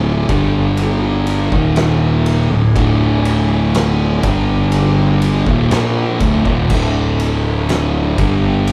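Heard as a band playing live in one room, with a moderate large studio reverb, this short cut from a longer stoner and doom metal piece feels ominous and brooding. Two thick, distorted fuzz guitars play the riff from the start, one up front and the other in the background, over a growly, overdriven fingered bass as the chords move through G5, Eb5, D5 and D minor. An oversized low-tuned drum kit enters at 0.3 seconds, its punchy kick, fat snare and dark crash and ride cymbals saturated and gritty in a pumping stone room.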